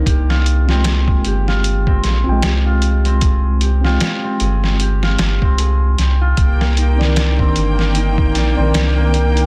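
Trip hop excerpt with a melancholic, brooding mood, built on a mellow tine electric piano carrying tremolo, 12-bit sampler grit, a low-pass filter sweep and tape echo, ringing thumb-plucked harp arpeggios with their own tape echo, a deep, round dub sub bass up front, a muffled, pitched-down sampler-style kit with a thumpy kick and medium-tuned snare and hi-hat, and a rich, smoothly bowed string section entering at 6.4 seconds as the harmony moves from Fmadd9 to Cm9, all set in digital ambience under a dense, heavily limited modern master.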